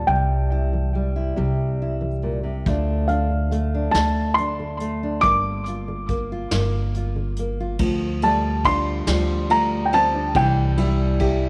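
Haunting and intimate, this short acoustic folk passage drifts in a straight 6/8 for a duo or small band, cut from a longer piece. A felt-muted upright piano carries the melody up front, its tone soft, mellow and dark with a short sustain from the thick felt, and a tape echo trails behind its high notes. A fingerpicked nylon-string guitar with fresh strings supplies deep, classical-style accompaniment, while a pizzicato upright bass sits up front with a woody low voice. A vintage brush drum kit enters at 2.7 seconds in a small, natural room, with dark cymbals, a medium-tuned snare, a punchy kick and a rolled-off top. At 7.8 seconds a second upright piano, boxy and warm, adds arpeggios in the middle register as the music moves into its second section, all wrapped in light reverb and studio ambience.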